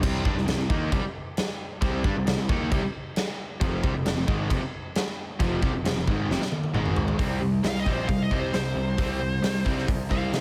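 A straight 4/4 pulse at 134 BPM drives this menacing, heavy hard rock excerpt in C minor, with a huge arena drum kit up front, its punchy kick and medium-tuned snare captured in a big room. A bright, cranked stack guitar and a crunchy overdriven guitar in the background play the riff over a fuzz-soaked picked electric bass, moving from Cm through F5 and Ab5 in a lightly reverberant space. After a drum fill at 6.3 seconds, a smooth overdriven lead guitar with tape echo enters at 7.6 seconds for a short solo pitched high above the band.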